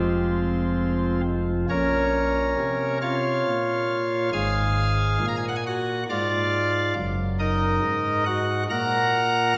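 A nasal, chiffy cornet stop on pipe organ plays alone and up front from the start in this dark, grave, chorale-style classical excerpt in Bb minor, moving in a rubato 3/4 at 69 BPM through Fm, Bbm, Bb7/Ab and Ebm/Gb harmonies across a range from F1 to Bb5, its baroque voicing bathed in the 1.9-second reverb of a wet scoring stage until it breaks off at 9.5 seconds.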